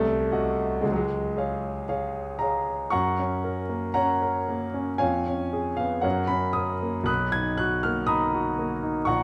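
Moving at a rubato 58 BPM in 2/4, this brief excerpt from a romantic character piece for solo piano unfolds with an unhurried, lyrical flexibility in F# major. A single grand piano carries everything, spanning A#1 to G#6 with a clear, intimate tone, long sustain and audible action noise that keeps it close and natural in the foreground. The harmony opens on a Cdim7 before settling onto C# and then F# at 2.9 seconds, where a second section begins. From there it passes through C#7/E# and back to F# before reaching a Bmaj7 at 7.1 seconds, lending the close a tender, open color. A moderate recital hall reverb surrounds the instrument, giving the warm, songlike mood a gentle sense of space.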